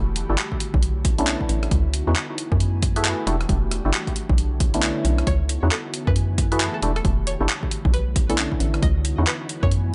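A swung two-step UK garage groove drives this moody, soulful clip from a longer piece, built on a punchy analog kick that drops out from 4.8 to 5.3 seconds and a gritty, up-front sampler-style breakbeat kit of handclaps, hi-hat and rim click. A hollow, bouncy FM bass sits under mellow organ stabs coloured by ensemble chorus, cassette tape and analog delay, while an airy, breathy pad pumps against the beat over a very quiet, dark ambient pad as minor-eleventh chords cycle. At 5.3 seconds a bright, twangy string-like resonator pluck enters with subtle chorus and tape echo, and the mix is echo-heavy with light reverb.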